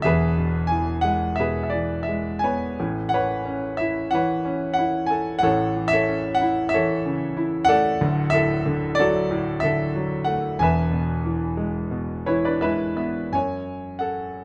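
This lyrical classical solo piano excerpt has a warm, relaxed mood and moves at 90 BPM in 4/4, its beats uneven and shaped by rubato. A clear concert grand plays alone throughout, reaching from a deep bass D1 up to G#5, with a smooth, vintage tone and a short sustain. The harmony in A major passes from E through Aadd9 and A to D, returns to E, and settles on F#m as a new section opens at 13.3 s. Just before that change, a piano fill begins at 11.9 s and leads into it. Close, detailed microphones place the instrument up front, light reverb adds a touch of space, and the tuning sits at A4 = 438 Hz.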